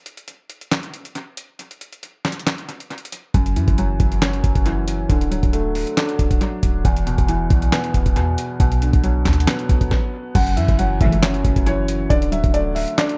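A half-time trap groove opens the excerpt on its own: a gritty, tape-warm sampler-style kit of thumpy kick, fat snare, hi-hat, handclaps and crash cymbal, placed up front and trailed by analog delay. At 3.3 seconds a dark baby grand piano enters with long-sustained accompaniment chords, while a clean, boomy 808-style bass with a sine tone and fast, decaying attack rolls underneath as the harmony moves from F#5 through D, E5 and Bm. After a brief stop, the closing section arrives at 10.4 seconds on F#m7, bringing a soft, felt-muted upright piano melody, mellow, intimate and warm. At 11.0 seconds a lush bowed string section adds a short stab with vibrato from the background. The mix is dry but echo-heavy, with delay on the drums, both pianos and the strings, giving this melancholic, eerie hip hop excerpt a haunted, lingering feel.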